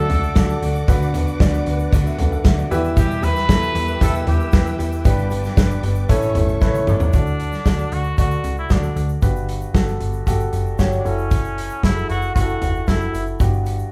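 Hopeful and gently glowing, this short piano-driven pop excerpt moves in a straight 4/4, sounding like a band playing live together in one large studio room with a moderate reverb. A clear, intimate grand piano carries the accompaniment throughout, its action noise audible, while a clear trumpet with a light vibrato and a vintage pop-style tone sings the melody. Beneath them, a plucky analog bass with a punchy, funky filter pluck and a moving notch anchors the low end, and a loose indie drum kit with a tight kick and a medium-tuned snare sits prominently in the mix. A picked steel-string acoustic guitar with audible finger squeaks plays a riff in the background, and a dark, lush bowed string section holds sustained chords behind it. Both drop out at about 7.1 seconds, just after a drum fill, leaving the trumpet, piano, bass, drums and a grainy, bright egg shaker to carry the second section over Gmaj7 and F#m7 harmonies.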